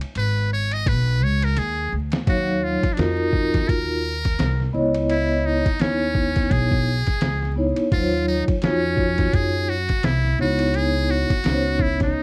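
Jazz-hop at 85 BPM with a swung, nocturnal cool, this excerpt opens on a break where a muffled, pitched-down sampler-style drum kit with a thumpy kick plays a fill under growly pizzicato upright bass and a buzzy, metal-muted trumpet solo with scooped notes, before a mellow, ringing soft-mallet vibraphone enters up front at 2.3 seconds over Ebm9 and Dbm9 chords, all wrapped in a dry, close 1970s-style studio sound with vinyl crackle.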